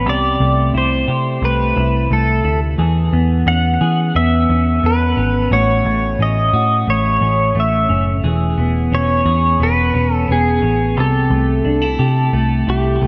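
Drenched in a long plate reverb, this floating, dreamy pop passage at 88 BPM in E major sets a bright, twangy pedal steel melody with slide and volume swells over fingered, scooped clean electric guitar arpeggios with chorus and delay, and a dark, round, foam-muted picked bass, all three held up front as the chords move through C6, E6 and A6.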